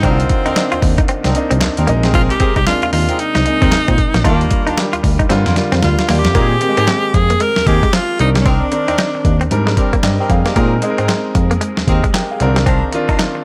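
Bouncy and punchy, this new jack swing R&B excerpt sets a forceful, vibrato-laden tenor saxophone lead with scooped notes over gritty, thumpy sampler-style drums with handclaps, a bell-like tine electric piano carrying the bass line, polished long-sustaining baby grand piano chords, a twangy direct guitar riff drenched in lush chorus, and distant horn stabs in the background, with the saxophone dropping out at 9.5 seconds after a drum fill at 5.3 seconds launches the second section.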